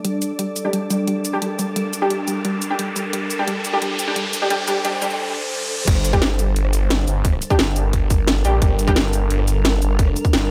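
A swarming, warbling drone, a dusty chorused pluck arpeggio and an overdriven drum kit of cracking snare, bright hats, cabasa, rim click and crash open this tense, futuristic dark technical drum and bass excerpt. Bold orchestra-hit-like synth stabs with dub echo and 12-bit grit build under filter sweeps, joined by an electronic riser from 1.5 seconds, until the drop at 5.9 seconds brings in a snarling, distorted saw bass and a tight, up-front electronic kick.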